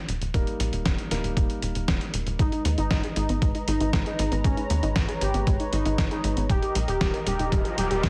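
Melodramatic and danceable, this italo disco excerpt at 117 BPM in G# harmonic minor drives along on a tight, nasal sequencer bass, a thumpy electronic kick and a gritty sampler-style kit with a fat snare and gated reverb, while dark piano stabs with delay give way at 2.4 seconds to bold, brassy synth lead, a smooth chorused analog pad and soft, warbling plucked arpeggios, before a background riser enters at 7.3 seconds.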